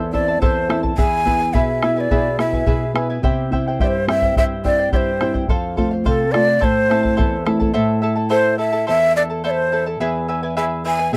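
A breathy large quena carries the melody up front, its wooden, end-blown tone warm and soft in attack, unsteady and touched with vibrato, in this earthy, wistful excerpt of Andean folk at 106 BPM in a straight 2/4. Beneath it, a fingerpicked charango shimmers with double strings while a small, thumb-plucked nylon-string guitar adds dark, fresh-stringed support, moving through Am, E, C and F. A deep, close and dry bombo drops out at 7.7 seconds, and the whole sits in a close 1970s-style studio sound with light reverb.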